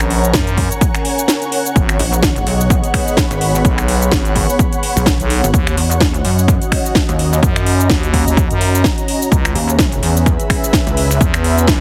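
A dark, moody analog pad, a growling FM bass, an ethereal airy pad and an overdriven house kit of finger snaps, shaker, metallic hats and a cracking snare open this bouncy, gritty bass house excerpt, with a punchy, up-front electronic kick joining at 0.3 seconds. A heavy, saturated, pulsing pluck wobble bass enters at 2.0 seconds, while sidechain pumping breathes through both basses and the two chorused pads. Swung sixteenths keep the groove lively, the kit has a large-room sheen, and the whole mix carries a heavily compressed, radio-like sound with light digital ambience.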